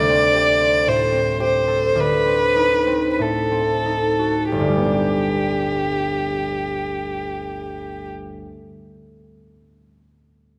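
A fingerpicked concert harp and a bowed violin open together in this tender, serene romantic classical duo, cut from a longer piece in G major, with one violinist singing a warm, vibrato-rich melody with expressive portamento and a smooth top while the ringing, acoustic harp accompanies over D7sus4 and D7b9 harmonies; the rubato 4/4 pulse of 43-57 BPM slows until the music settles on G at 4.5 s, both instruments sit up front in a wet recital hall reverb, and the violin stops at 8.1 s as the harp carries on to 8.5 s.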